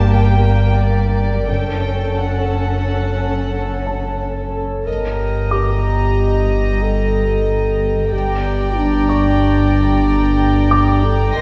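A dark solo clarinet in classical style stands out most, entering at 4.5 seconds with a second line over a mysterious, ominous suspense film score in 5/4 with a straight feel. Above it, a violin section carries the melody with soft-attack, sul tasto bowing that sounds pure and floating, while a second violin section adds a supporting line in the same warm, close studio tone. A glassy, ethereal glass harmonica holds sustained chords with a slow attack and audible beating, sitting in the background in a boxy small room. Underneath, a shadowy chamber cello section and a deep, full sub bass drone with octave anchor the low end from the start, joined at 1.5 seconds by a bowed double bass section, and soon after a mellow, vintage grand piano adds background texture with audible action noise. The harmony drifts from G minor to F sharp minor, then to E flat over G before returning to G minor, and a rich, high violin section arrives only at 11.4 seconds as this excerpt from a longer piece closes, all set back in the room with a wet scoring-stage reverb.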